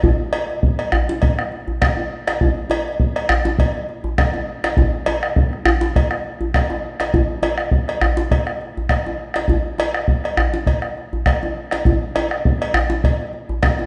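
The bombo is the loudest voice in this West African drum ensemble recording, its deep, dark tone sitting up front with a compressed, saturated weight. It is a powerful, driving piece of West African traditional percussion, moving at 102 BPM in 4/4 with a light swing on the sixteenths. The djembe plays alongside it from the start, medium-tuned and also placed close, with the intimate air of a small room. A metallic cowbell joins at 0.3 s and sits lower in the mix, carrying a live-room acoustic. A wet recital hall reverb with a 1.6-second tail surrounds the group, and the highs are gently rolled off, giving the sound a rounded, dusky top. This short cut from a longer piece stays in one section throughout, ending at 13.9 s.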